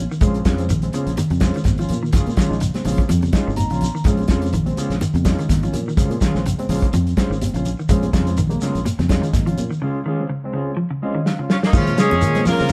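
Recorded live in one room with a light reverb, this driving, defiant afrobeat excerpt grooves at 125 BPM in Bb minor on a single Bbm7 chord with a lightly swung sixteenth feel. An up-front soul drum kit with a punchy kick and dark cymbals plays alongside a round fingered electric bass, while a clean electric guitar plays arpeggios and a mellow second guitar adds stabs. Grainy shekere and very quiet ringing congas fill out the percussion, and a reedy electric piano with fast tremolo sits in the background, adding fills around 3.3 and 10.8 seconds. A drum fill leads into the entrance of a warm, loose horn section carrying the melody at 11.5 seconds, joined by a bright, vintage-toned alto saxophone on a second line.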